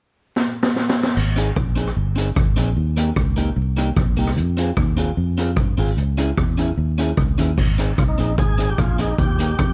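Ska at 150 BPM in Ab major, cheerful and upbeat, cut from a longer piece with a dark production, small-room ambience and vinyl crackle. A street-band drum kit opens with a fill at 0.4 seconds, its boomy kick and medium-tuned snare up front alongside a round, foam-muted fingered electric bass that enters at 1.2 seconds, while an electric guitar through a small old amp adds slightly broken-up, compressed accompaniment with tape echo over the chords Ab, Eb, Fm and Dbm. At 8.0 seconds a lightly overdriven tonewheel organ takes the melody, its key click and fast rotary speaker colored by tape echo.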